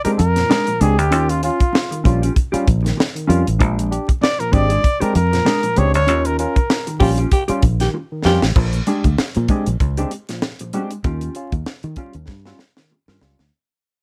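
A tight, dry funk groove at 97 BPM in 4/4 swings its sixteenths lightly, with a high-tuned snare, tight kick, hi-hat and crash up front, and a punchy, foam-muted fingered electric bass sitting just as close. The harmony rocks between Bb13 and Eb9, filled out by a dark, clean, compressed electric guitar and barky stabs from a tine electric piano heard through a combo amp. An up-front, close-miked trumpet carries the strutting, energetic melody with vibrato and scooped notes until 7.0 seconds, when a growling, raspy tenor saxophone with a breathy subtone takes over briefly on a single note. A band accent from 6.1 seconds runs into a drum fill, and from 8.6 seconds the groove fades out, closing with another fill. The production is dark and warm, with light reverb and a layer of vinyl crackle, and the passage is cut from a longer piece.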